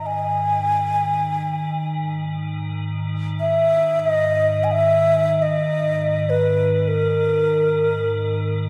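Spacious and haunting, this brief excerpt of free-time world meditation music in G# hirajoshi sets a breathy, bamboo-toned xiao melody, close-miked and up front with vibrato, tongued notes and an unsteady, human edge, against a low, icy glass pad drone. The pad sounds crystalline and airy, its detuned sine layers carrying a noise layer, a moving notch, chorus and its own reverb, with slow attack and long release. Delay trails the xiao, and the whole 8.7-second passage sits in a wet church reverb with a three-second decay.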